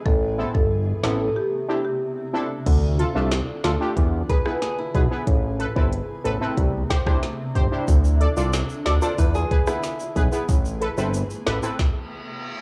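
Dancehall with a tough, hypnotic mood, this short cut from a longer piece rides a straight groove built on an up-front island pop drum kit with a knocking kick, woody snare and smooth hats, alongside a fat, saturated analog bass with a detuned sawtooth edge. A granular cloud pad sits in the background with blurred, evolving sustained chords, its built-in reverb and sidechain pumping giving it a breathing quality, while punchy, bright synth brass stabs with a filter pluck and chorus fill out the accompaniment. A dark, woody marimba states a brief melody only at the very start before a break, and from 4.3 seconds a boxy flamenco guitar adds fingerpicked arpeggios complete with finger squeak, touched with analog delay. A close, ringing tube shaker joins late for extra lift, and after the band stops at 11.8 seconds an electronic reverse cymbal closes the passage. Cassette tape coloring on several parts, light reverb and a small room ambience give it a lo-fi, homemade character.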